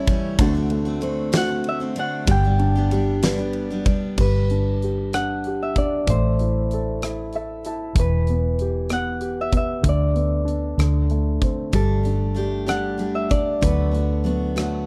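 A dry, close 1970s-style studio sound frames this heartfelt, tender six-eight pop ballad excerpt in G major at 64 BPM, where a ringing, fingerpicked Celtic harp carries the melody over a warm, open baby grand piano with long sustain that adds fills at the very start and around 7.0 seconds, a bright, full-bodied picked steel-string dreadnought guitar playing arpeggios that drop out at 4.2 seconds and return at 11.7 seconds, a dark, round, foam-muted vintage fingered electric bass up front, and a huge, natural arena drum kit with a fat snare, punchy kick, hi-hat, ride, crash and rim clicks, moving through chords such as D7, G, Am, Em and Gsus2.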